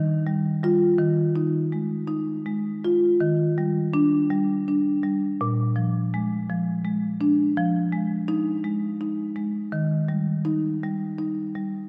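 Bathed in a lush church reverb, this short excerpt of a contemporary classical piece for solo marimba plays with soft mallets on rosewood bars, sounding woody, round and up front as it moves with a playful, warm rubato at 55 BPM in 6/8, spanning Bb2 to F4 in Eb major through gentle harmonies from Ebadd9 and Ebmaj7 to Bb7 and Fm7 before settling on Eb at 9.7 seconds.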